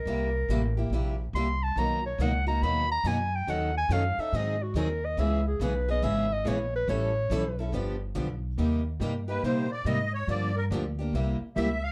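Swung eighths in 4/4 carry this bittersweet jazz manouche fragment, cut from a longer piece, as a close-miked clarinet with light vibrato and scooped notes leads up front through plate reverb until 7.7 s, over a woody, thumpy gut-string upright bass plucked in the foreground, a bright, boxy picked parlour guitar, and a second plugged-in parlour guitar with fresh strings that joins at 1.8 s, before a reedy, shimmering musette accordion takes over the solo at 9.3 s, framed by a dark, moderately reverberant club sound.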